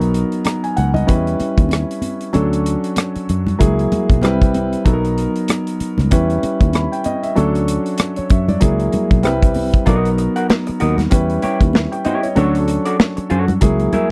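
A swung-sixteenth groove at 96 BPM in 4/4 carries this romantic, lush 1970s-style soul piece in B major, where a tight-kicked, smooth studio kit of hi-hat, kick, rim click and snare sits up front beside a round, punchy, foam-muted fingered bass and a natural, deep-bottomed concert grand piano cycling through Bmaj7, Em6, Dmaj7, F#9/C# and Cmaj7, while bright, high-tuned congas enter in the background at 0.5 seconds and a slightly broken-up, lo-fi, compressed electric guitar riff joins at 9.9 seconds, all captured in a dry, close studio sound.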